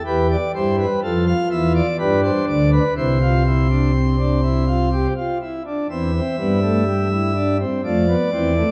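Solemn and contemplative, this short cut from a longer baroque-style three-part fugue in 3/4 features a solo pipe organ on a full principal chorus with romantic voicing, placed up front and spanning C2 to F5, its dark tone blooming in a concert hall reverb as the harmony moves from E minor through F and G to C before a new section begins at 5.9 seconds.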